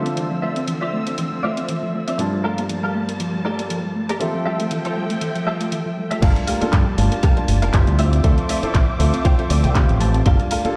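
This cosmic, groovy nu-disco piece in G dorian opens with a clear grand piano, its intimate action noise audible, alongside a lush, distant symphonic string section holding sustained chords with vibrato and a gritty 12-bit sampler character. A twangy, compressed clean electric guitar plays a picked riff through ensemble chorus, a low-pass filter and digital delay. Almost at once, a soft, round pluck adds dark arpeggios with chorus and tape echo, and a house kit brings bright hats, handclaps and crash cymbal at 119 BPM in 4/4 with a light swing on the 16ths. The guitar steps out with a fill at 1.2 seconds as the harmony moves through Dm9, Gm9 and Fmaj9. At 6.2 seconds the drop lands, with a punchy, up-front electronic kick and a direct fingered electric bass with an envelope filter joining, while the bass, piano, strings and pluck pump with sidechain. Another guitar fill arrives at 9.2 seconds, and the mix sits in a moderate hall reverb, as if played back on a big sound system in a bare stone room.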